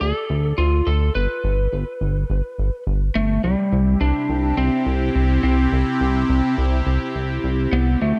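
A lightly driven electric guitar and a chorused synth bass open this dreamy, nostalgic synthwave fragment together, moving at a straight 105 BPM in 4/4 in C major. The guitar carries the melody with a twangy, slightly broken-up, picked tone that sits up front and trails off into tape echo. Beneath it, the bass holds a low register with a glossy, retro pulse-wave and sawtooth character, a plucky filter and tube saturation, also placed prominently in the mix. At 3.7 seconds a phased analog pad enters with sustained chords built from detuned sawtooths, its slow attack and long release giving a swirling, bright shimmer through phaser and chorus. The harmony moves from D5 to G at 1.2 seconds and settles on C at 3.4 seconds, all within a dark production with light reverb and digital ambience.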